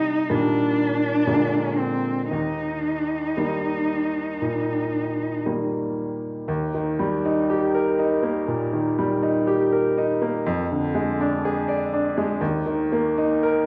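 Romantic classical music for cello and grand piano, elegiac and melancholic, in Eb major at a slow, rubato 56-65 BPM in 4/4, cut from a longer piece. A warm, expressive bowed cello sings the melody with vibrato and portamento in a narrow range until 5.4 seconds, after which the bright, open grand piano carries on alone through 13.7 seconds. A recital hall reverb surrounds the duo, and a worn, warbling cassette tape quality adds a drifting pitch to the whole recording.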